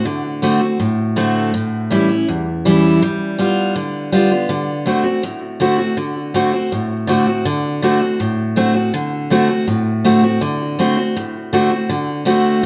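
Rock with a retro, rowdy spirit, this short cut from a longer piece features a picked steel-string acoustic guitar playing solo, its bright, full-bodied dreadnought tone sitting up front with an analog delay trailing behind. The guitar moves through D7, A7 and G7 chords in a straight 4/4 feel, with a repeat of the opening section arriving at 7.5 seconds. A moderate large-studio reverb gives the sense of a band captured live in one room.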